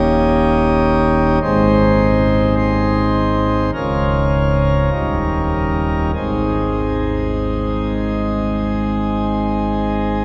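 A pipe organ's principal chorus opens on a dominant seventh chord and sounds alone through this 10.2-second excerpt, cut from a longer classical piece. The playing is chorale-style in Ab major, moving slowly at 48-52 BPM in 4/4 with a flexible, rubato feel. The mood is majestic and reverent. The organ sits up front with a full, romantic voicing that spans from a deep Db1 in the bass to Eb5 at the top. The harmony moves from that opening Eb7 to Ab at 1.4 seconds, through Db and back to Eb7, and settles on Ab again at 6.2 seconds. A cathedral reverb with a long 7.5-second decay surrounds the sound with a resonant, spacious halo, and the instrument is tuned slightly high, to A4 = 441 Hz.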